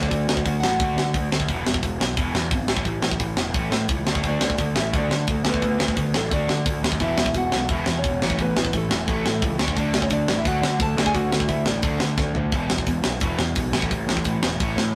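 A rough rehearsal-room recording with light reverb captures this energetic, upbeat punk rock excerpt, cut from a longer piece and driving along at 174 BPM in a straight 4/4. Up front, a tight metal drum kit with a high-tuned snare, tight kick, hi-hat and toms pushes the whole 14.9 seconds, adding a short fill at 12.2 seconds. Underneath, a fuzz-soaked picked electric bass growls through overdrive, while a tight distorted guitar, bright and sitting in the background, carries the riff over chords moving between D, E and A. Unusually for the style, a fingerpicked nylon-string guitar with fresh strings and a full-bodied, deep classical tone takes the melody, audible finger squeaks and all, sounding briefly at the start before returning at 4.3 seconds. At 7.0 seconds a second, sludgy overdriven guitar joins very quietly beneath the mix, thickening the riff.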